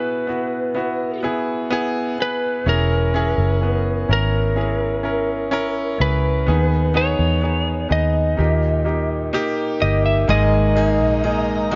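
A slightly broken-up, dark lead guitar carries the melody over a clear concert grand piano with audible action noise and long sustain in this heartbroken, emotional pop ballad excerpt. A round, foam-muted electric bass enters up front at 2.7 seconds beneath the slow, straight pulse. At 10.3 seconds the music moves into a new section, where a full-bodied picked acoustic guitar adds arpeggios and a breathy, airy pad with chorus and phaser holds soft sustained chords, all within an intimate small room.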